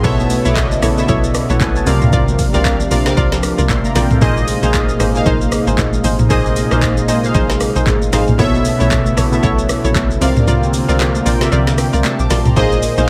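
Soulful and hypnotic, this amapiano passage, cut from a longer piece, rides a swung sixteenth-note groove over sus chords that drift between B, C and B-flat. Up front, analog keys with a round, detuned sawtooth tone and a filter sweep carry the accompaniment through chorus and phaser, while a smooth, slow-blooming pad sits in the background with chorus and sidechain pumping. A hollow, bouncy square-wave pluck adds bright stabs treated with chorus and tape echo, and a deep log drum bass gives round, dark, percussive hits with a fast attack and a noisy FM edge. The overdriven electronic drum kit, with its deep kick, woody snare, metallic hats, handclaps, rim click, shaker and toms, sounds re-recorded in a small room, and very quiet, ringing, high-tuned congas join at 0.2 seconds from a distant, large space. The kick drops out at 10.5 seconds, and a synth keys fill arrives at 11.0 seconds, keeping the close, dry mix moving.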